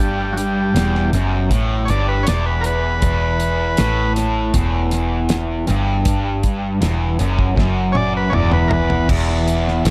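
Trippy and mysterious, this short excerpt of psychedelic rock moves at a slow 79 BPM in 4/4 with a straight feel, sitting on an E minor chord in a tuning just under standard pitch. A buzzy, clean vintage combo organ carries the melody as a solo from the start, its line soaked in tape echo until it stops at 9.1 seconds. Underneath, a cranked stack guitar plays a low riff, its bright, overdriven, double-tracked tone pushed up front and colored by harmonic tremolo and tape echo. A deep dub picked electric bass gives a dark, round, foam-muted bottom, while a damped 70s drum kit enters at 0.4 seconds with a fat snare, tight kick, hi-hat, toms and crash, touched by tape echo and playing a fill from 7.6 seconds. The mix is echo-heavy, set in a small room, and closes on an unharmonized stretch as the chord drops away at 9.1 seconds.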